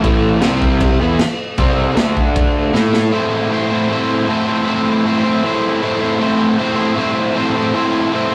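Garage rock in A minor at 156 BPM in a straight 4/4, this swaggering, gritty excerpt is cut from a longer piece. A crunchy, bright, overdriven electric guitar, picked and double-tracked, sits up front with a riff spanning A2 to C5 across the whole 8.3 seconds. Beneath it, a fuzz-laden picked electric bass adds a growly, tube-saturated low end from A1 to A2 in the background, while a raw acoustic drum kit with a boomy kick, medium-tuned snare and crash cymbal pumps in a small room with a rolled-off, saturated top. The drums drop out around 3.0 seconds and the bass at 3.1 seconds, just after a drum fill from 2.7 seconds, leaving the guitar alone for the rest. The rough rehearsal-room sound carries a moderate stone room reverb that gives the playing a gritty, live edge.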